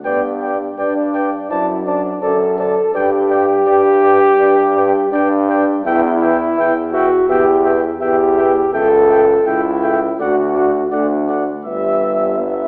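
Heard through a thin, AM-radio filter, this brass quintet sits in a wet recital-hall reverb that lends it the resonance of a church or concert hall. It is a short, noble and stately passage from a longer classical piece in D major, taken at a rubato 83 BPM in 4/4. The mellow trumpet carries the melody with light vibrato and a soft attack, while a warm flugelhorn traces a second line just beneath it from 0.1 seconds. Up front, the trombone gives a smooth-topped, gently vibrato-tinged accompaniment, and a bright bass trombone anchors the bass. The French horn adds a soft-edged inner voice in the background. The harmony moves from G through Em and A7/C# toward D, settling on Em/G as the excerpt breaks off at 12.7 seconds.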